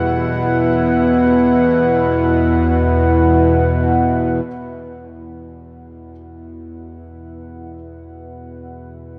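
In free time, this ominous, desolate dark ambient drone excerpt in E minor sets a tense, string-like bowed drone with vibrato and ring modulation beneath a deep, warbling pad of chorused sustained chords moving from Emadd9 to Esus2 at 4.5 seconds, while a boxy grand piano's arpeggios stay barely audible until they stop at 4.5 seconds, all soaked in a lush hall reverb for a dreamy, moody haze.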